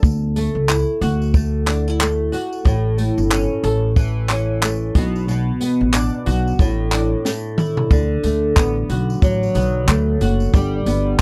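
Easy-going and sunny, this short acoustic pop cut from a longer piece moves at 91 BPM in D major with a swung sixteenth-note feel, built on a double-tracked, fingerpicked flamenco guitar whose finger squeaks come through alongside a woody pizzicato upright bass on steel strings. A compact cocktail drum kit sits up front with a punchy kick, a high-tuned snare, toms, handclaps and its own tambourine, while a separate jingly, bright tambourine stays in the background. A drum fill at 7.3 seconds leads into a new section at 7.9 seconds, and the whole recording has the dry, close sound of a 1970s studio with little reverb.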